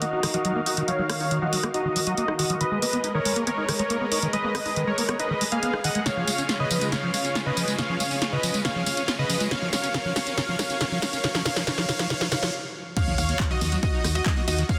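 A driving 4/4 pulse at 139 BPM in Eb minor powers this soaring uplifting trance excerpt, built on a punchy, tape-warm analog drum machine with crash, handclaps, hi-hat, rim click, snare and tambourine, while huge, bright supersaw chords carry the melody over a phaser-tinged filtered supersaw swell and a squelchy, resonant liquid acid bass arpeggio, all pumping to the sidechain as filter sweeps open the supersaw lead and acid bass through a build-up moving from Ebmadd9 through Abmadd9, Db and Gb. A very quiet riser creeps in at 4.5 seconds, a drum fill gives way to a brief stop, and at 13.0 seconds the drop lands with an impact, a punchy electronic kick, a round, dark FM bass on Eb2 and a warbling vintage pluck in the background. The sound is dense and heavily limited, set in a moderate concert-hall reverb.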